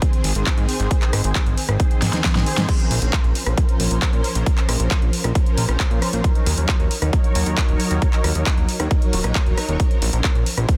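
Euphoric yet bittersweet, this uplifting trance passage in Bb minor drives at 135 BPM in a straight 4/4, cut from a longer piece, with a punchy, overdriven electronic kick sitting up front beside a big-room kit of huge snare, handclaps, hi-hat, rim click and crash cymbal, its hats and cymbals pumping to the sidechain and a drum fill landing at 2.0 seconds. A fat, detuned sawtooth bass with a plucky filtered attack enters at 0.2 seconds and pumps beneath a silky, slow-blooming analog string pad whose chorused, vibrato-laden chords move from Ab through Bbmadd9 and Ebm7. The sound is dry and densely limited, with a modern, loud finish.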